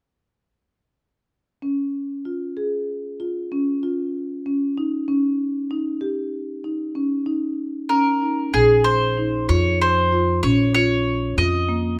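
At 1.6 seconds a warm marimba, struck with medium mallets, begins arpeggios in its middle register over a Db chord that moves to Eb7. This short cut from a longer contemporary instrumental piece feels restless and urgent, set in Bb dorian in an uneven 11/8 metre at 191 BPM counted in eighths, with a straight feel and tuning at A4 = 442 Hz. At 7.9 seconds an acoustic mandolin takes the melody, its picked double strings giving a round tone a little higher than the marimba. A pizzicato upright bass with steel strings enters at 8.5 seconds, woody and dark in the low register, as the harmony settles onto Bbm7 and a new section begins. All three instruments sit up front in a light reverb.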